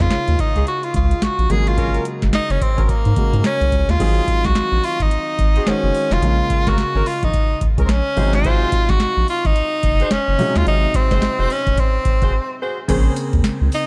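An edgy, forceful tenor saxophone with vibrato and delay leads this slick, confident new jack swing R&B excerpt up front, over a clear baby grand piano, a round, deep analog bass, and a booming drum machine of deep kick, crisp snare, metallic hats, crash and tambourine, while a smooth-topped jazz horn section with delay adds background stabs from 0.6 seconds, all in a dark, lightly reverberant digital production with a short break at 12.3 seconds.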